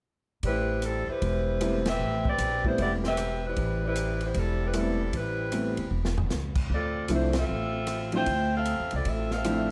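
A saxophone section carries the melody up front in this dramatic, brassy big band swing excerpt in A minor, its soft attack, light vibrato and roomy, distant ensemble tone giving the line a jazz-style glow. Underneath, a woody, thumpy pizzicato upright bass on gut strings anchors the low end at 153 BPM in a swung 4/4. The acoustic drum kit sounds airy and polished in a hall setting, with a punchy kick, medium-tuned snare, hi-hat, ride, crash, rim click and toms, and it adds a short fill just past the midpoint. A concert grand piano joins as accompaniment at 1.6 seconds, intimate and natural, with deep bass, short sustain and audible action noise. The band hits accents together at 1.8 and 7.3 seconds as the harmony moves from Am9 to Dm9, and the mix sits in light reverb with a dark production.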